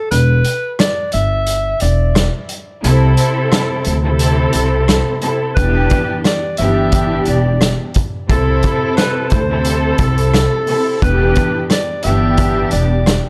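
A breathy tenor saxophone leads this dark, gritty boom-bap hip-hop fragment, cut from a longer piece and opening the break at 0.0 seconds with a mellow, whispered subtone, vibrato and scooped notes that sit distant and roomy in the mix, shaped by filtering and delay. Beneath it, a woody, growly upright bass played pizzicato on steel strings and a vintage acoustic drum kit with a punchy kick, medium-tuned snare, rim click and hi-hat both sit up front, the kit carrying a pumping small-room sound and a rolled-off top. At 2.8 seconds a muted studio string section enters, bowed con sordino with vibrato and a soft attack, lush yet veiled and given a cassette-tape coloring. The tempo moves at 88 BPM in 4/4 with a light swing on the 16ths, in E minor, cycling through Em, C6 and Em7. Small room ambience and a warm, shadowy production tie the parts together.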